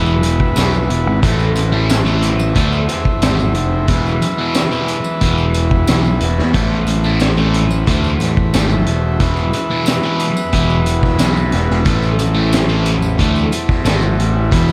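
Drenched in a dreamy cathedral reverb with a 5.2-second tail, this snippet of trippy, dark psychedelic rock rolls at 90 BPM in a straight 4/4, alternating between E and Am. A thick, bright, double-tracked fuzz guitar riff with phaser sits above a round, punchy, overdriven fuzz bass that is up front in the mix, while a buzzy vintage combo organ holds clean sustained chords through spring reverb and a very quiet tanpura drone shimmers beneath. A jingly tambourine enters in the background at 0.1 seconds, and a vintage drum kit with a high-tuned snare, tight kick, hi-hat and a rolled-off top follows at 0.2 seconds.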